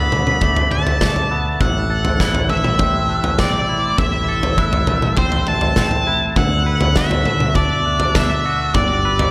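An up-front, dark octave-fuzz lead guitar carries the melody through distortion and digital delay in this brooding, cathartic post-rock excerpt at 101 BPM in A dorian, over a punchy big rock drum kit that enters at 0.1 s, a growly fingered bass in the background, twangy clean electric guitar arpeggios and airy, bell-like glockenspiel arpeggios dressed in slapback echo and delay, while a very quiet, hollow, warbling pad slips in at 2.4 s as the chords move from D6 to Am, back to D6 and on to Gadd9 inside a lush hall reverb with a big arena sound.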